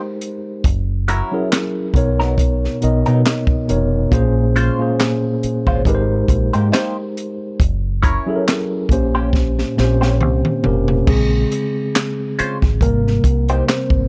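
A dark, close-sounding mix in a small room gives this short slice of slow neo-soul R&B a sultry, soulful glow, moving at 69 BPM in 4/4 with a lazy sixteenth-note swing in Bb dorian. A mellow tine electric piano opens the cut and carries the harmony through chords like Abmaj9, Gb7 and Bbm9, its clean tone sitting up front as if heard through its own built-in speakers. A compact cocktail drum kit joins almost at once, dry and acoustic, with a punchy kick, a high-tuned snare, dark cymbals, hi-hat, toms, handclaps and a crash. A deep dub fingered electric bass arrives just after, round and amped, pushing the low end forward, while a vintage hollow-body jazz guitar slips in behind at 1.1 seconds as a picked, compressed second line coloured by wah. A drum fill leads into a closing section where the electric piano takes a brief solo from 11.1 seconds, and the guitar drops out shortly before the end.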